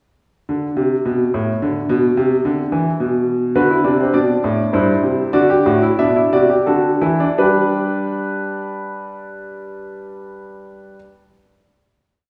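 Classical baroque-style fugue in three parts for a solo concert grand piano, stately and elegant in triple time, with smooth, deep-bassed, vintage-toned imitative counterpoint placed up front in a reverberant recital hall, the exposition slowing from 2.7 to 7.4 seconds before settling onto a closing G chord from 7.4 seconds.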